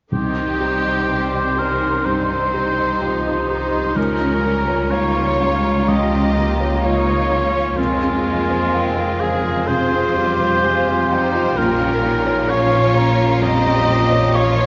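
Moving and full of longing, this rubato cinematic film-score cue in Bb dorian drifts at 63 BPM through Cm, Bbm/Db, Fm and Bbm, with a lush, expressive violin section carrying the melody from 0.1 to 14.7 seconds. Around it, a mellow solo oboe sits forward among the second lines, joined by an airy silver flute, a close-miked clarinet and a second, smooth-bowed violin section. Beneath them, a distant viola section and a dark, felt-muted upright piano with audible action noise provide the accompaniment, while an even cello section and a focused double bass section hold the bass, all bathed in a long church reverb.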